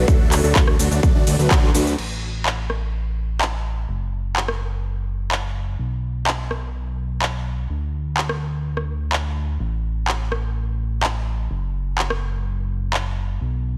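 A straight 4/4 pulse at 126 BPM drives this triumphant, euphoric slice of festival progressive house, cut from a longer piece. It opens on a drop over a D chord, where a punchy, up-front electronic kick and a crisp big-room kit of handclaps, hi-hat, shaker, rim click, ride and crash hit a band accent at 1.5 seconds. Huge, detuned supersaw chords, bright and lush, carry the riff through phaser, delay, a low-pass filter and sidechain pumping until 1.9 seconds. Beneath them a fat, saturated sawtooth bass, also pumping to the sidechain, sits thick and forward in the low register. After 2.0 seconds the harmony falls away, leaving the bass and the tape-tinged kit to drive the groove under a light reverb until the kit stops at 13.0 seconds.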